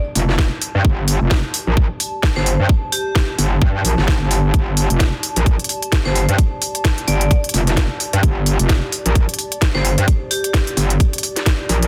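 A dense, heavily limited modern master sits in a digital ambience, with the drums carrying the tape-warm color of a large room. This short cut from a longer bass house track has a bouncy, swaggering feel and a swung sixteenth-note groove in 4/4. Up front, an aggressive, metallic FM wobble bass is pushed through distortion, overdrive and chorus, with sidechain pumping, alongside a tight electronic kick. A garage drum kit adds a cracking snare and crisp hats. In the background, a warbly, nostalgic lo-fi pad of detuned, wave-folded tones carries a vintage tint, with chorus, its own reverb and sidechain pumping. At 2.4 seconds a vibraphone struck with hard mallets brings in a dark, ringing melody, its slow motor vibrato trailing through delay until 10.8 seconds.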